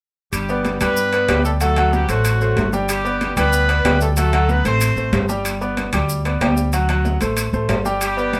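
A punchy, smooth-topped horn section carries the joyful, festive melody of this salsa excerpt, falling silent at 5.3 seconds before returning briefly at 8.0, over up-front brilliant grand piano accompaniment, a woody, thumpy pizzicato upright bass, ringing metal-shell timbales, high-tuned background congas and grainy, close maracas, all cycling between G and D7 in a moderate studio reverb.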